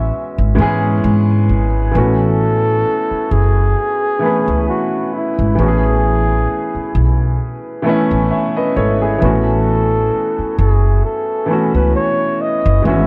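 A breathy, mellow flugelhorn solo with vibrato and scooped notes, softened by a low-pass filter, leads this cosy, nostalgic lo-fi hip hop excerpt at 66 BPM with a gentle swing, floating over a woody upright piano with long sustain, dulled by tape and filtering, and a pizzicato upright bass sitting up front, as lush chords move from E69/G# to A69 and Amaj9#11 in a lightly reverberant, cassette-tinged mix.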